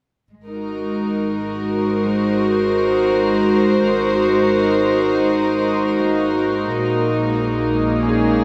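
A dark chamber string section opens this ambient fragment at 0.3 seconds, holding sustained chords up front with a nasal, reedy, gut-string tone in period style and a smooth top. Beneath it, a rich symphonic double bass section fades in, bowed sul tasto with a pure, floating sound that stays in the background. A concert harp enters at 2.1 seconds with very quiet, fingerpicked arpeggios that ring softly. At 6.3 seconds a very quiet, bright, string-like drone slips in with a slow attack, vibrato and a tense sawtooth edge over a sine and noise layer. At 56 BPM in a slow, straight 3/4 in Ab mixolydian, the harmony rests on Ab7 before moving to Gb69/Bb, and the whole mix is soaked in a huge, dreamy reverb that leaves the mood luminous and weightless.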